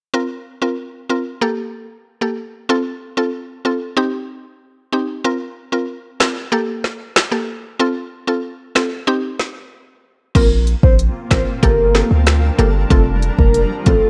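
A straight, bouncy dancehall groove in four opens with a bright, woody mallet-like synth pluck wrapped in chorus, which carries the hypnotic chord cycle alone until an up-front afro-pop drum kit enters at 6.2 s with a deep kick, smooth hats, snaps and rim clicks roughened by vintage 12-bit sampler grit. After a brief break, at 10.4 s a boomy 808-style bass, a dark, octave-layered synth lead with chorus, phaser and vibrato, and barely audible high-tuned bongos arrive together. Moments later a blurred, evolving granular cloud pad with its own reverb and sidechain pumping settles in softly, in what is a short cut from a longer piece.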